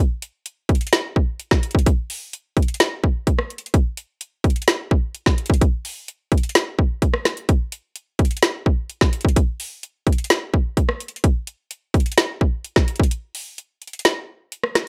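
Hip hop in a half-time 4/4 feel at 128 BPM, this dreamy, wistful excerpt features only an electronic trap drum kit, up front with light reverb in a rough home demo mix, its hard-clipped kick, woody snare, rim click and metallic hi-hats carrying a tape-warm sheen from 0.2 seconds through a break at 13.1 seconds to the close at 14.9 seconds.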